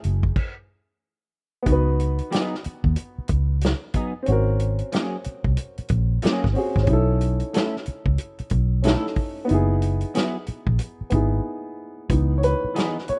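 Late-night and introspective, this short neo-soul and R&B passage, cut from a longer piece, moves with a swung, unhurried 4/4 feel over sus and minor ninth chords. A woody, smooth upright piano with short sustain carries the accompaniment, joined by a dark, round, foam-muted fingered electric bass and a soul drum kit of kick, snare, hi-hat and crash, its tight booth sound mid-forward with a rolled-off top. Everything pauses for a stop at 0.4 seconds before the groove settles in, and at 2.3 seconds a clean, hollow-body semi-hollow electric guitar enters with a second line, colored by analog chorus. After a brief break, the piano takes a short solo from 12.1 seconds, settling back on a minor ninth chord. The sound is that of a rough home demo with studio reverb, with the instruments placed up front.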